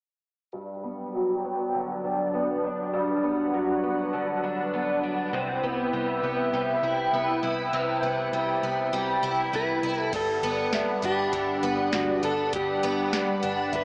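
Dreamy and ethereal, this dream pop excerpt at 100 BPM in G major opens at 0.5 seconds with a shimmering, octave-doubled twelve-string acoustic guitar picking arpeggios up front, soon joined by a swirling, detuned sawtooth pad with phaser and chorus, both moving through Gmaj7 and Cmaj7 under a filter sweep. A round, foam-muted electric bass enters at 5.3 seconds, and later a dark, clean electric guitar carries a mellow melody through analog delay. From 10.1 seconds, a vintage rhythm box adds a deep kick, crisp snare, and metallic hats, and a pure FM bell follows shortly after, decaying in the background, all soaked in a wet spring reverb and echo-heavy mix with a small-speaker sound.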